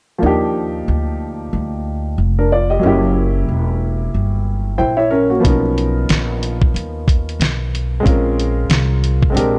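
A smooth, vintage-toned grand piano and a woody, growly pizzicato upright bass open this relaxed, cool jazz-hop cut at 0.2 s, moving through lush chords such as Ebmaj9 and Bmaj9#11 at 92 BPM with a swung 16th-note feel. After a brief piano fill at 4.5 s, a gritty, compressed sampler-style drum kit arrives at 5.4 s with a thumpy kick, fat snare and hi-hat sitting up front. Light reverb and studio ambience give the hip hop track a dark, warm production.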